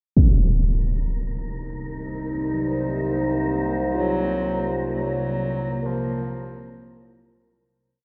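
At a slow, straight 64 BPM in 4/4, this short, ominous and desolate dark ambient drone piece in C minor opens with a huge, brilliant, low-passed impact at 0.2 seconds. A resonant sawtooth-and-sine drone with moving overtones and chorus then fades in alongside an airy, breathy, wind-like noise texture holding a high note in reverb, and a deep, moody analog pad with detuned square and sawtooth waves, a sub octave and a moving notch carries the shifting chords from Cm to Bbsus2/C. In the background a metallic bronze singing bowl rings in three slow, drifting loops in a boxy small room, while from 4.0 seconds a clear, vintage bass clarinet with a soft attack plays a free, classical-style solo melody up front as the whole piece fades out in a dark production with light small-room ambience.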